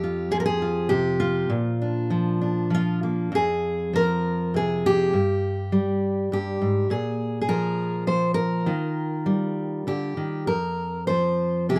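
A rough home-demo sound with light reverb frames this intimate, haunting folk piece, cut from a longer work and played on a lone fingerpicked steel-string acoustic guitar placed up front. The dark, full-bodied guitar moves in a loose, rubato 3/4 at 100 BPM in F dorian, spanning F2 to C5. Its harmony drifts from Fsus2 and Bb into Fm, passes through a chordless moment at 5.1 seconds, then moves through Bb5 and Ebadd9 to F5.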